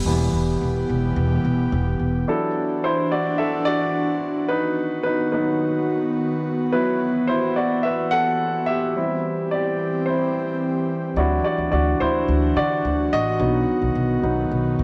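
A straight 4/4 pulse at 108 BPM drives this short pop cut from a longer piece, set in E minor with a driving, dramatic mood. A polished, present grand piano sits up front and carries a solo line across the whole passage, moving through Em, Dadd9, B, Esus2 and C before returning to Dadd9 and B. Alongside it, an airy, breathy pad built from detuned sawtooth and triangle tones with a noise layer holds sustained chords, its slow attack, long release and chorus giving it a soft yet bright glow. A woody, dark upright bass, plucked pizzicato on steel strings and placed up front, appears at the opening, drops out at 2.2 seconds, and returns at 11.2 seconds to anchor the final chords. Light reverb and a touch of studio ambience frame the sound.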